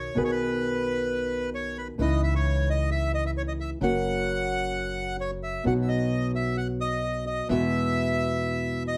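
A moderate studio room gives this short tango excerpt a natural, lightly reverberant sound. The mood is passionate and playful, moving at 131 BPM in 4/4 with a rubato feel in B major. A reedy, bright bandoneon sits up front and carries the melody throughout, while a dark, thumb-plucked flamenco guitar, also up front, supplies the accompaniment with audible finger squeak. Underneath, a pizzicato upright bass with steel strings lays down a woody, thumpy low end. The harmony moves through G#m/B, C#madd9 and F# before settling on B and then Eadd9 near 7.5 seconds.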